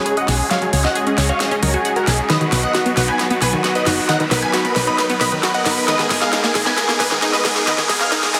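Driving straight four-four pulse from a big-room dance drum kit, its huge overdriven snare and metallic hats pushed up front, carries this short uplifting trance build-up as a drum fill runs throughout. A solid FM bass arrives at 0.3 seconds, punchy and round with a dark, decaying tone, underpinning chords that move from C#sus4 to B and then G#madd9. Above it, a huge, euphoric supersaw lead sings the melody, bright and compressed, colored by phaser, low-pass filtering and digital delay. A filtered supersaw swell holds sustained chords with an evolving, sub-octave body, while a tight sequenced synth plucks driving, chorused arpeggios with tape echo in the background. A background riser enters at 0.4 seconds, and filter sweeps and a lush hall reverb feed a dense, heavily limited mix that builds a soaring sense of anticipation.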